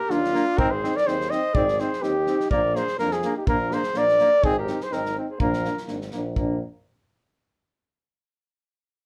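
Balkan folk brass band music, exuberant and festive, moving at 124 BPM in 2/4 with a light swing on the sixteenths, set in Bb mixolydian and cut from a longer piece. A dark, close-miked cornet carries the melody up front with light vibrato, while a mellow alto saxophone with a punchy attack and smooth top plays a second line in the background. Beneath them a bright trombone and a warm euphonium supply the accompaniment, the trombone sounding distant and roomy, and a soft-attacked tuba holds down the bass from Ab1 to F2. A loose acoustic drum kit drives the beat with a fat snare and tight kick in a small room. The harmony shifts between Bb and Ab, and the whole band plays live together in one room with a wet studio ambience, the cornet and saxophone dropping out at 5.9 seconds while the trombone, euphonium, tuba and drums carry on until 6.6 seconds.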